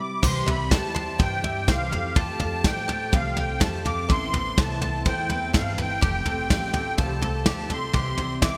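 Anthemic and uplifting, this short excerpt cut from a longer indie folk piece moves at 125 BPM in a straight 4/4 in C major, its arrangement building over a progression of C, Fadd9, Am(add9) and back through Fadd9 to C. A reedy, shimmering musette accordion carries the melody up front from the very start, sitting high between F5 and D6 in a boxy small room. A very quiet, dark fingerpicked steel-string acoustic guitar opens alongside it but drops out by 2.2 seconds, while a full-bodied, octave-doubled twelve-string acoustic guitar enters at 0.2 seconds with a picked accompaniment and a lush chorus. Behind them, a twangy bluegrass banjo plays bright arpeggios with fingerpicks, a clear brass section holds soft-attacked sustained chords with light vibrato, and a woody pizzicato upright bass anchors the low end. A brushed drum kit with a punchy kick, snare, toms and crash sits prominently in front, and a crisp group handclap lands briefly at 8.4 seconds. 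The whole mix is wrapped in a moderate hall reverb and a bright, 1980s-style digital production sheen.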